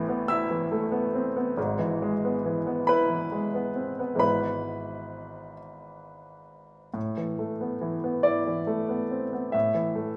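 A clear baby grand piano plays alone from the start, sitting up front with audible action noise and a short, natural sustain, in a melancholic, intimate piece of neoclassical minimalism that moves in an unhurried, rubato 6/8. It opens on Asus2, shifts to E/G# at 1.6 seconds, and returns to Asus2 at 7.0 seconds as a new section begins, spanning low G#1 up to A6. A moderate recital hall reverb surrounds this brief fragment, which is cut from a longer piece and ends at 10.2 seconds.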